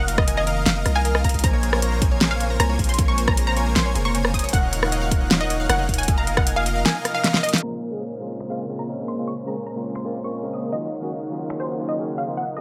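A half-time 4/4 future bass groove drives this dreamy fragment, with a punchy electronic kick and an up-front pop kit of fat snare, metallic hats, rim click, finger snaps and crash, while a deep, sine-toned 808-style bass pumps beneath until 6.8 seconds. A detuned unison pluck carries the melody through tape echo, a huge compressed supersaw riff pumps under a low-pass filter, and an ethereal pad holds chords in the background as an airy lead and a second, very quiet ring-modulated pluck trace arpeggios. After a drum fill, a barky tine electric piano enters at 7.6 seconds with lush chorus and tape echo as a filter sweep carries the piece to its close.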